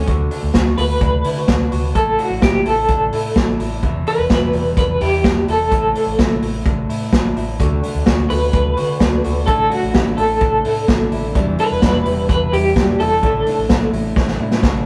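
Nostalgic and youthful, this jangly indie pop excerpt in D major moves at 128 BPM in a straight 4/4, cycling through D, Asus4 and Em7 in a rough rehearsal-room sound with a small-room reverb. An up-front, twangy electric guitar through a small old amp carries the tremolo melody over a second, darker slightly broken-up electric guitar playing arpeggios, a round, foam-muted vintage fingered bass, and a punchy vintage kit with a rolled-off top. A full-bodied fingerpicked steel-string acoustic guitar sits in the background, heard briefly at the start and returning at 7.6 seconds, while a drum fill at 14.2 seconds closes the passage.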